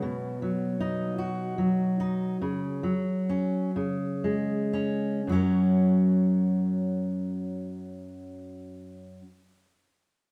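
A full-bodied, up-front fingerpicked jumbo steel-string acoustic guitar with fresh strings carries this short, hopeful and intimate folk fragment in 6/8 and F# major, moving at a slow 37-52 BPM in dotted quarters and slowing down over the first 5.3 seconds as it moves from B through C#sus4 and C#5 before settling on F# at 5.3 seconds, all within the reverb of a stone room recorded live.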